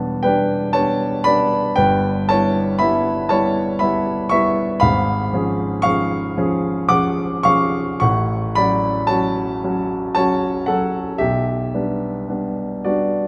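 The rhythm moves in a slow 3/4 at 57 BPM, its beats stretched and uneven with rubato, giving this romantic nocturne for solo piano a yearning, melancholic sway. A single grand piano carries the whole passage alone, ranging from E1 up to D6, with a polished, present tone that sits up front. The harmony opens on Em7 and Em/G before C#7/G# arrives at 4.8 s and settles the music into F# minor, passing through F#m/A and closing on G/B. A moderate concert hall reverb with a 2.4-second decay surrounds the instrument, lending the sound a gentle sense of space. This brief fragment of about 13 seconds is cut from a longer piece.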